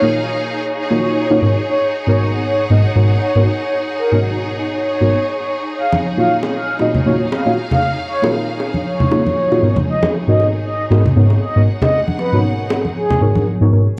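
A swung sixteenth-note groove in 4/4 drives this deep, moody slice of deep house, cut from a longer piece. Dark, soft chord stabs sit up front throughout, their sub-octave weight coloured by chorus, phaser and a gritty vintage-sampler edge, and they pump against the sidechain. A round, horn-like synth lead carries the melody with a soft attack and vibrato, treated with chorus and analog delay. Alongside it, a lush, bowed symphonic string section adds a clear, smooth-topped texture and also pumps. Bright acoustic bongos and congas join at 5.9 seconds, sounding up front yet set in a large room. The harmony moves between Ebm9 and Abm11, wrapped in light reverb, digital ambience and a cassette-tape patina.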